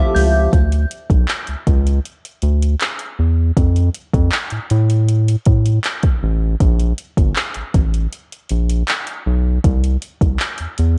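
This contemporary R&B excerpt moves at 79 BPM in a straight 4/4, romantic and tender in mood. In its first half-second, a felt-muted upright piano with audible action noise sits in the background, a very quiet French horn section holds mellow chords with light vibrato, and a clean, direct-recorded electric guitar picks arpeggios through analog chorus and delay. A ringing, inharmonic FM synth chime glints high from 0.1 s to 0.9 s before fading on its long release. From 0.2 s, a round, deep analog bass with a fast attack and sustained, evolving tone carries the piece to its end alongside an up-front electronic R&B kit of soft kick, metallic hi-hats and handclaps, its sound colored by cassette tape. The harmony moves from Fmaj9 through Dsus2, F and a rootless Gmadd9 to C, all in a dry home recording made on cassette.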